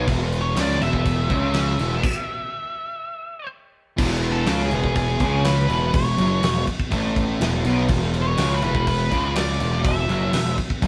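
A dark, double-tracked fuzz guitar riff and a bright, growly overdriven picked bass open this restless, anthemic quiet-loud alternative rock excerpt at 123 BPM in 4/4 with a straight feel in E mixolydian, tuned to A4 = 441 Hz, with an octave-fuzz lead guitar carrying the melody above them from the start. A big acoustic rock kit sits up front with a fat snare, tight kick, crash cymbal and rolled-off top, and the band halts in a stop from 2.0 to 4.0 seconds before the same section returns. The band plays live in one room, wrapped in a moderate stone room reverb, with the bass and drums pushed forward.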